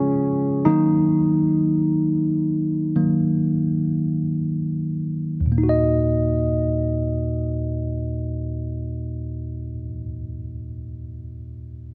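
In a straight, slow 4/4 that slows down across the opening 5.6 seconds, this pop fragment, cut from a longer piece, carries a longing, emotional mood. A bright, barky tine electric piano, clean and up front through a combo amp, plays alone at first and then continues as accompaniment until 11.9 seconds, ranging from deep bass notes to high chimes. A lush hall reverb with a long tail surrounds it, set in a dense, heavily limited modern master.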